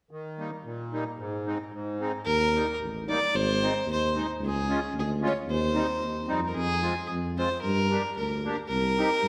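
A bowed gut-string fiddle, played by one player with a reedy, smooth-topped tone, carries the melody of this jolly, festive alpine folk dance excerpt at 112 BPM in 2/4 in Eb major. It enters at 2.3 seconds together with a mellow, classically styled tuba on the bass line. The sweet accordion, with its light tremolo tuning, opens alone from 0.1 seconds and keeps up the accompaniment until 9.1 seconds. All three sit up front in a wet concert-hall reverb that lends a roomy sheen as the harmony moves from Eb through Ab and Db toward a closing Cm7.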